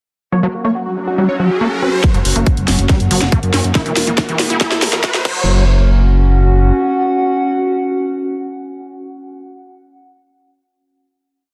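A dense, heavily limited master with light reverb and lossy compression artefacts carries this alien and driving psychedelic trance piece at 140 BPM in F# major, where a thick detuned unison lead with phaser, sidechain pumping and dub echo opens at 0.3 seconds alongside a squelchy, distorted acid bass line with slides and a very quiet nasal vowel-sweep wobble bass, joined shortly after by a resonant overtone-sweeping drone, a background riser and a nostalgic, warbling tape-like pad of slowly shifting chords, before a punchy four-on-the-floor electronic kick and a drum and bass kit with a cracking snare, hats and crash arrive at 2.0 seconds, followed at 2.1 seconds by a round, deep analog bass rolling in sixteenth notes to drive the build. The acid and analog basses linger into the final note, while the lo-fi pad sustains until 9.4 seconds.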